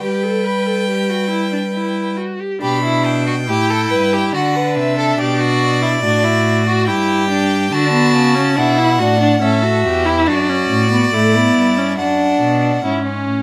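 This is a baroque-style classical fugue for string quartet, cut from a longer piece, elegant and stately in G major at a measured 70 BPM in 3/4 with a straight feel. A clear, close first violin carries the melody high in its range, bowed with vibrato, while a second violin adds a smooth, even inner line beneath it. A rich, bowed viola fills in the accompaniment, and a focused cello sits up front with the bass line. A short opening phrase gives way at 2.6 seconds to a longer passage whose harmony moves from G through D7 and D toward A7 and D/F#. The first violin stops at 12.8 seconds as the music lands on E/G#, leaving the lower three strings to sound on briefly. Light reverb gives the quartet a gentle sense of space.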